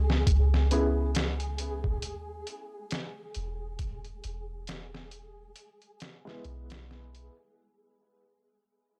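A swung 68 BPM trip hop groove from a gritty, pitched-down sampler drum kit with a thumpy kick enters at 0.1 s over a deep, round 808-style bass, a mellow felt-muted upright piano with audible action noise, tremolo, tape echo and a filter sweep, and a flickering, granular texture, moving from C#m to E in a hypnotic, brooding, cassette-toned fragment that fades out across its length.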